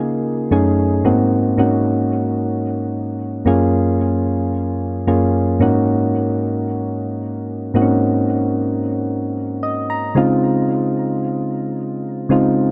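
R&B in Db major at 112 BPM, with an upbeat, flirty mood and a swung sixteenth-note feel, carried entirely by a solo electric-piano-like synth keys part that sounds round, warbling and vintage, colored by chorus and tape echo. The keys move from a Db69 opening through Gbm6 and Ab9 to a long Ab7sus4 and Gbmaj7 stretch, add a short fill at 9.4 seconds, and settle on a Dbmaj9 at 10.2 seconds. The mellow, up-front keys sit in a dark production with light reverb, in this fragment cut from a longer piece.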